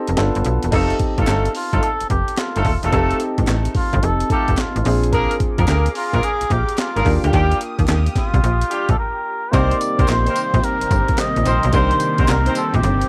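A cup-muted trumpet with light vibrato carries a soft, veiled jazz-style melody over a polished baby grand piano, joined at once by a snappy, metallic FM slap bass and a gritty, compressed breakbeat kit with a thumpy kick, high-tuned snare, hi-hat, tambourine, handclaps and crash, all in a punchy, bouncy new jack swing groove at 109 BPM with a swung sixteenth feel in C dorian. A distant, roomy horn section adds loose, octave-doubled stabs with tape echo from 0.7 seconds, a crisp, very quiet group handclap sits close and dry underneath, and a lush, detuned sawtooth pad with chorus and phaser enters in the background at 5.1 seconds. Brief breaks punctuate the chord movement from G7 through Ebmaj9 to Cm7, and the whole cut carries the character of a cassette home recording in a light reverb.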